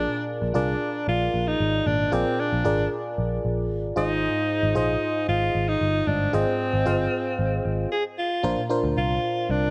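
A straight 4/4 pulse at 114 BPM carries this moody, dramatic slice of 1980s-style pop, cut from a longer piece. Up front, a breathy, clear alto saxophone plays a jazz-style solo melody with vibrato and tape echo, over a glassy, bell-like FM electric piano treated with chorus and a dark, round, foam-muted picked electric bass. The harmony moves from Bb7 to Ab6, and a new section arrives at 8.4 s on Bbadd9, framed by a lush hall reverb.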